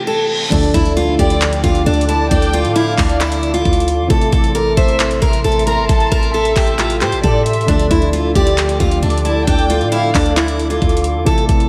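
A dreamy, reverb-soaked mix with a plate-reverb sheen opens this brooding, hard-hitting hip hop and trap cut, taken from a longer piece and set in D minor at 134 BPM with a half-time feel. A very quiet reverse cymbal rises over the first half second before an impact lands at 0.5 seconds. From there a trap kit with a knocking kick, metallic hats, handclaps and crash brings a gritty 12-bit sampler edge, while a deep, boomy 808-style bass anchors the low end. Up front, a bright, fresh-stringed acoustic guitar carries the picked melody, with audible finger squeak and a diffuse ambient delay. Beneath it, warbling, nostalgic lo-fi synth keys with chorus fill out the accompaniment, and from 1.2 seconds a glassy, ethereal FM pad with ensemble chorus and phaser sits in the background, alongside a floating, pure-toned violin section playing a bowed second line. The harmony moves between Am and Dm throughout.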